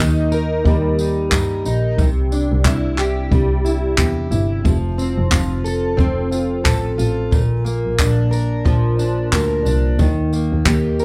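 Set in a small, intimate room, this easy-going, carefree acoustic pop excerpt in F major moves at 90 BPM with a swung sixteenth-note feel, built on an up-front, full-bodied, double-tracked fingerpicked jumbo steel-string guitar with fresh strings and a bowed double bass singing with vibrato and portamento, joined at 0.3 seconds by a distant, roomy brushed jazz kit with a boomy kick, handclaps, tambourine and a rolled-off top, plus a jingly, close and dry tambourine tucked in the background, all drifting through Eb, Cadd9, F and Bb.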